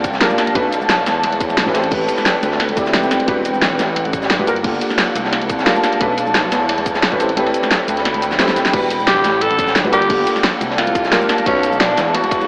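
Heard through a narrow, AM-radio-style filter, this melancholic liquid drum and bass passage sits in a lush hall reverb blended with small-room ambience. A soft, felt-muted upright piano plays intimate accompaniment through a digital delay. An ethereal, airy pad holds slow-blooming chords, coloured by ensemble chorus, its own reverb, tremolo and a vintage 12-bit sampler grit. Beneath them, a deep, rumbling detuned saw bass beats gently. The drums are layered: an up-front pop kit with a fat snare, cabasa, crash and hi-hat, a punchy electronic kick that drops out from 7.4 to 8.7 seconds around a drum fill, and a dark, saturated breakbeat kit with a high-tuned snare and dark cymbals tucked in the background, with congas murmuring behind. At 9.1 seconds a growling, breathy tenor saxophone steps up front with raspy subtone, vibrato and scooped notes, trailing a dub echo as this cut from a longer piece closes.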